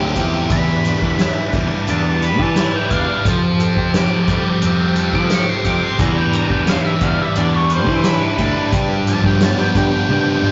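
A rough rehearsal-room recording with tube saturation, a dulled top end and the wet echo of a stone room carries this trippy, kaleidoscopic psychedelic rock excerpt, where a bright, double-tracked fuzz guitar riff sits up front over a punchy overdriven bass and a boomy soft-mallet drum kit that enters at 0.2 s, a dark, distorted octave lead guitar with wah plays the melody from 0.5 s, and a fat tonewheel organ with key click and slow rotary speaker holds sustained chords in the background throughout, with a drum fill arriving at 10.1 s.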